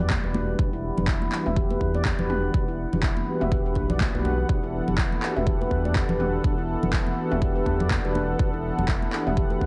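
An up-front, overdriven electronic kick drives this spiritual, hypnotic afro house excerpt at 123 BPM in E minor, set on an Em7 chord with a swung sixteenth feel and joined by a layered, overdriven deep house kit with handclaps and toms and bright, high-tuned congas tucked in the background. A round, deep analog bass, a ringing handpan playing delayed arpeggios, dark synth brass stabs with chorus and delay, and a detuned sawtooth pad holding sustained chords all pump through sidechain compression. A filter sweep on an analog polysynth runs from 0.0 to 9.7 seconds, and the whole mix carries a heavily compressed, radio-like sound with light digital reverb.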